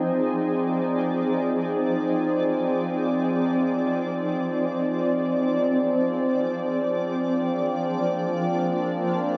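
A wet, spacious stage reverb surrounds this serene ambient excerpt in free time and F dorian, tuned to A4 = 437 Hz, where an up-front shimmering pad of ethereal, wave-folded, granular tones with octave-up shimmer, chorus and built-in reverb sustains chords from Fm7 to Bb/F at 5.6 s over an evolving, detuned sawtooth-and-pulse analog drone colored by chorus and phaser, both parts playing throughout the 9.4 seconds.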